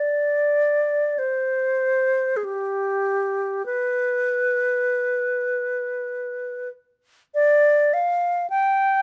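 Unfolding in a free, rubato 4/4 at roughly 47-54 BPM, this short classical passage, taken from a longer piece, gives an unaccompanied alto flute the whole stage for its 9.0 seconds. The flute sits up front with an airy, bright tone, tongued notes, vibrato and lifted highs, singing between G4 and G5 in a lonely, yearning voice. A moderate studio reverb gives it a gentle sense of space.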